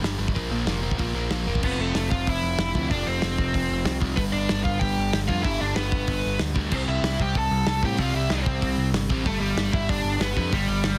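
Dry and densely limited, this upbeat, rebellious punk rock fragment charges along at 189 BPM in straight 4/4, with an overdriven, double-tracked semi-hollow guitar riff, a bright, growly picked bass and a loose, punchy small-room drum kit with dark cymbals opening on a Bb5 power chord before a biting, dark overdriven lead guitar enters at 1.6 seconds as the band drives through F, G, C and back to G.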